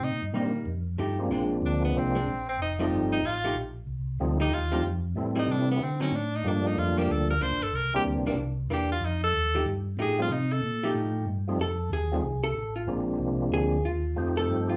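An edgy, forceful tenor saxophone opens this swinging, greasy jazz excerpt with a punchy solo full of scooped notes and vibrato, over a round, dark tonewheel organ bass line softened by chorus vibrato and a slow rotary speaker. A second, lightly overdriven tonewheel organ with percussive second-harmonic attack and a clean, compressed hollow-body archtop guitar join almost at once. After the saxophone stops at 11.0 seconds, the picked guitar takes a brief solo from 11.6 seconds, all in a small club room with moderate reverb.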